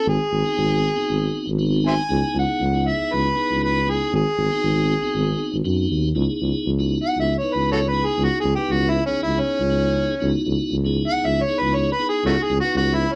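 A straight-eighth groove with a slight sixteenth-note swing drives this smoky, soulful soul blues at 118 BPM in C# minor (A4 = 438 Hz), moving between G#7#9 and C#m7 chords. Up front, an amplified, gritty overdriven harmonica carries the melody with tongue slaps, scooped notes, a soft attack and light vibrato, taking a solo from 6.2 seconds, while a dark, breathy tuba holds down the bass close-miked with its own scoops and a similar vibrato. Behind them a piping, lightly overdriven tonewheel organ supplies accompaniment through a slow rotary speaker, key click audible, as the band plays live in one room with a touch of reverb in this cut from a longer piece.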